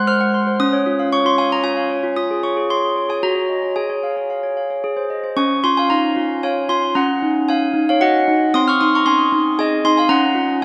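A long, wet cathedral reverb of about 4.0 seconds surrounds this short classical passage, captured in a church or concert hall. It is a lullaby for handbells in Db major, moving at 114 BPM in 3/4 with a straight feel, tuned slightly high to A4 = 441 Hz. A solo set of handbells plays from start to finish across 10.6 seconds, sitting up front with a clear, ringing tone and the crisp strike of hard clappers, spanning Ab3 to F6. The mood is innocent and tender, and the harmony stays gentle, opening on Ab7 before settling around Db and passing through Ebm7 and Ab colours. A second section begins at 5.4 seconds and returns home to Db near the close of this fragment from a longer piece.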